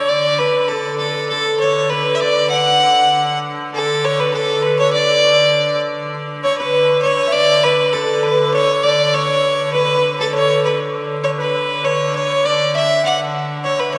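A straight two-beat pulse drives this rustic, festive medieval dance, cut from a longer piece and set in a wet church reverb. Up front, a single bowed fiddle carries the melody with a biting, intense tone, light vibrato and a smooth top. Beneath it, a ringing, fingerpicked concert harp plays a softer second line in the same register over the nasal, earthy D3 drone of a keyed, wheel-bowed hurdy-gurdy, and all three play throughout as the opening section gives way to a new one at 6.1 s.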